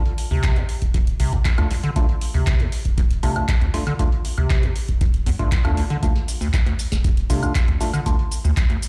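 Hypnotic and gritty, this acid house excerpt sets a squelchy, resonant square-wave acid bass riff, roughened with overdrive and 12-bit sampler grit and moving through a filter sweep, over a round analog bass with sidechain pumping and an up-front deep electronic kick, while a booming analog drum machine adds crisp snare, metallic hats, handclaps, shaker and woodblock, a very quiet dusty soul sampler-style kit adds faint overdriven hi-hat and snare, and a nasal, organ-like percussive stab with chorus and tape echo adds mellow punctuation, all resounding as if played on a big sound system in a bare room.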